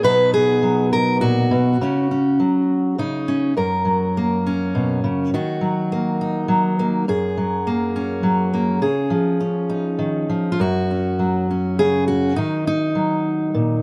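Set in a straight three-beat metre, this short passage of solo fingerstyle folk feels peaceful and gentle from its first bar. A single fingerpicked steel-string acoustic guitar carries the whole piece, ranging from its low bass strings up into a bright upper register. The fresh strings give the tone a crisp sparkle, and a finger squeak adds a close, human texture, with the instrument sitting up front in a light reverb. The harmony drifts from suspended chords at the opening into a settled, ringing stretch at 3.6 seconds built on added-ninth colours and a minor chord. From 10.6 seconds a sparer open fifth returns to the minor chord before the passage breaks off, clearly cut from a longer piece.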